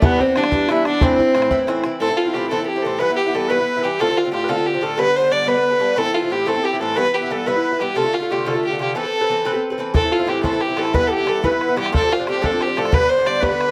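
A bowed fiddle with a gut-string, reedy tone leads this spirited, wild Celtic jig in 6/8, backed up front by a mellow, metallic picked Irish bouzouki on double strings, while a bright, pure silver concert flute with vibrato and tape echo sits in the background on a second line, and a tight, damped bodhran plays until 1.9 seconds and returns at 9.9 seconds, all within a moderate studio reverb.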